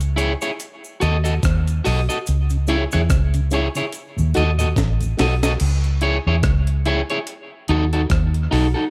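Deep and spacious, this short dub reggae excerpt moves at a relaxed 72 BPM in 4/4 with a gentle swing on the sixteenths, sitting in C# minor and cycling between C#m and D#dim. A dark, foam-muted vintage electric bass sits up front with a round, amped tone, anchored low between A1 and E2, while a compressed, sampler-style breakbeat kit supplies a gritty, thumpy kick, a high-tuned snare, rim clicks, hi-hat and crash, opening on a break and adding a drum fill from 4.8 to 5.6 seconds. An electric guitar at the edge of break-up, picked and twangy, also sits forward and carries a dub echo. A mellow, clean tonewheel organ with key click and vibrato drifts in the background through a slow rotary speaker from 2.5 to 5.3 seconds. A cabasa adds a faint live-room shimmer until 5.6 seconds, and a digital ambience gives the whole mix its sense of space.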